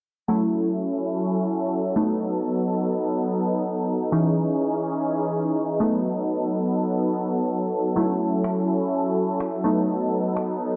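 Dance-pop at 125 BPM in 4/4 with a straight feel, this energetic, driving passage in F# dorian is cut from a longer piece and tuned slightly sharp to A4 = 441 Hz. A crisp, digital wavetable chord stab sits up front from 0.3 s, its detuned unison voices giving a bright filter pluck with a fast attack that then decays. Alongside it, a filtered supersaw swell holds sustained chords with a soft attack, its detuned sawtooth unison evolving and warm, and it also sits up front. The harmony moves through F#m7, B7, C#madd9 and back to B7 before returning to F#m7 and B7, while a filter sweep runs through the whole passage. Layered electronic finger snaps enter in the background at 8.4 s, and the mix is bathed in a moderate spring reverb with a low-pass filter.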